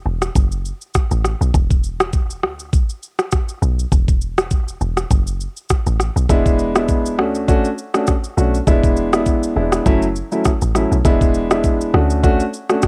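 A deep, round log drum bass sits up front with a fast, percussive attack and a mellow decay, carrying a breezy, sunny afrobeats groove at 101 BPM in E mixolydian with a light 16th-note swing. An electronic, produced drum kit of knocking kick, rim click and shaker joins at 0.2 seconds through a cassette-tape grit, and a polished, present baby grand piano enters at 6.3 seconds to add warm chords moving through E7, Dmaj7 and F#m7. The home-cassette sound carries a light reverb, and the passage is cut from a longer piece.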